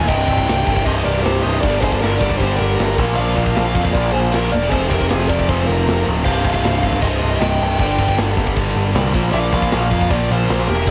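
A straight 4/4 pulse at 156 BPM drives this dark, heavy metal excerpt in C minor, cut from a longer piece and cycling through Cm, Gm, Bb and Fm. An acoustic metal kit in a big room sets the beat with a tight kick, a medium-tuned snare and bright china and crash cymbals, carrying a cassette tape coloring. Up front, a growling picked electric bass with overdrive sits low beneath a pair of high-gain distorted guitars, one of them double-tracked, playing the riff in the background, joined by a very quiet, tight distorted guitar on the same riff. Above them a bluesy lead guitar, dark and distorted with its own tape grit, carries the melody from Ab4 to Ab5, while a lap resonator guitar enters at 0.1 seconds with a metallic, nasal slide line played with fingerpicks. A lush bowed string section, distant and barely audible, holds smooth sustained chords underneath, and the whole track has the small-room feel of a home recording on cassette.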